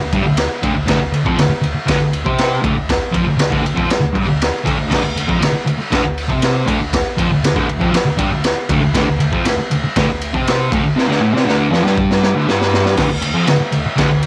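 A double-tracked fuzz guitar, picked and distorted with a cassette-tape grit, drives a raw, rowdy garage rock riff at 119 BPM in straight 4/4 over a saturated, up-front acoustic kit with a high-tuned snare, boomy kick, crash and ride, a drum fill from 11.0 to 13.0 seconds leading into a new section at 13.0 seconds, all captured with moderate booth ambience on a home cassette recording and cut from a longer piece.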